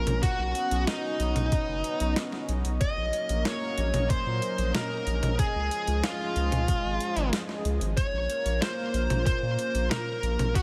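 Synthwave at 93 BPM in Bb minor, cinematic and nostalgic, this short cut from a longer piece sets a distorted, up-front high-gain lead guitar with delay carrying the melody over a shimmering chorused pulse-width pad and a deep, round analog bass that both pump with sidechain, while a clean 12-bit digital drum machine with tape-tinged snare, hi-hat and toms joins at 0.1 seconds and a thumpy, overdriven electronic kick recorded in a large room arrives at 0.2 seconds, all under light reverb as the chords move from Badd9 through Gb/Bb and Db to Bbmadd9.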